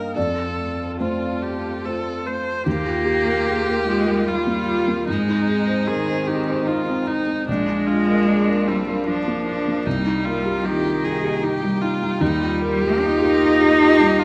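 A felt-muted upright piano, boxy and mellow with audible action noise, opens this hopeful, intimate neoclassical excerpt in Eb major alongside a smooth bowed solo viola and a dark, woody string section holding lush sustained chords in the background, before an up-front, focused cello with vibrato enters at 0.2 s as a second line, all moving at a rubato 75 BPM in 3/4 through chords such as Ebadd9, Ab, Bb and Cm7 inside a moderate recital-hall reverb.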